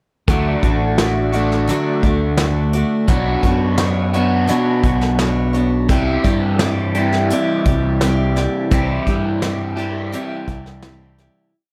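A close, natural small-room sound with light reverb frames this short, jangly folk rock and heartland rock piece in a straight 4/4, moving through D, Bmadd9 and Cadd9 before a fade-out from 8.7 seconds. A bright, full-bodied steel-string acoustic guitar strums open chord shapes in eighths with plate reverb, while a crunchy, double-tracked overdriven electric guitar rings out chords through a phaser. Underneath, a round, amped fingered bass sits locked to the punchy kick of a soft brush kit playing a rock groove with a medium-tuned snare.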